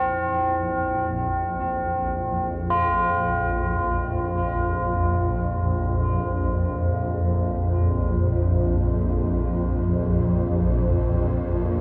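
Unfolding in free time, this dark ambient drone piece sits on a single Bbsus2 harmony and feels desolate and tense across its 11.8 seconds, cut from a longer work. A swarming synth drone fills the low register from Bb1 to F2, fading in over the whole passage with a slow attack, a sustained tone and a long release. Its detuned unison of sine and sawtooth tones, roughened by ring modulation and granular texture, keeps the sound restless and evolving, carried in its own built-in reverb. Above it, tubular bells struck with a rawhide hammer play solemn, metallic arpeggios between C4 and F4, their ringing tone trailed by a diffuse ambient delay. Both parts sit up front in a dark, warm production, washed in a huge, wet reverb with a decay of 7.7 seconds.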